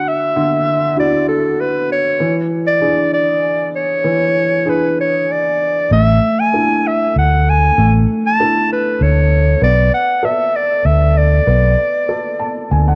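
A breathy clarinet carries the melody up front in this heartfelt, intimate acoustic folk-pop ballad in 3/4, singing with vibrato, scooped notes and a smooth, jazz-tinged top as it moves between A4 and A5. Beneath it, an upright piano gives a woody, slightly detuned accompaniment, its audible action noise adding to the close, natural feel, and both clarinet and piano carry the soft colour of cassette tape. A fingered electric bass enters at 5.9 seconds with a growly, amped tone, sitting prominently in the low register. The harmony moves from Dadd9 to E7, then to Asus4 and Bm7, under a light studio reverb that suits the home cassette recording. The passage is cut from a longer piece, ending at 13.0 seconds.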